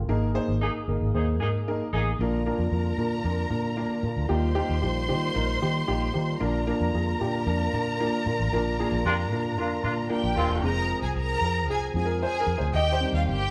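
Soul at a danceable, warm groove in straight 4/4, built on a dark, woody upright piano and a round, foam-muted electric bass up front, with a very quiet, fat tonewheel organ holding percussive chords through a slow rotary speaker with key click. A mellow horn section adds a brief vintage-tinged second line near the start and again around 9.1 seconds, while a lush, bowed string section enters at 2.2 seconds with expressive vibrato and portamento. From 10.6 seconds the slightly detuned, boxy piano takes a solo turn over minor chords, all set in a large room reverb with a faint mains hum from the live band.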